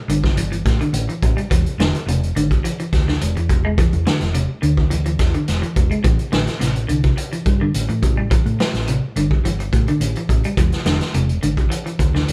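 An up-front vintage drum kit drives this hypnotic afrobeat excerpt at 106 BPM in A minor, its punchy kick, medium-tuned snare and hi-hat carrying a natural, rolled-off top. A dark, round hollow-body short-scale bass sits low beneath a clean, picked semi-hollow guitar playing arpeggios. All three play throughout as a live band in one room with light reverb, moving from A7(no3) through E7(no3) and Am7 to E7.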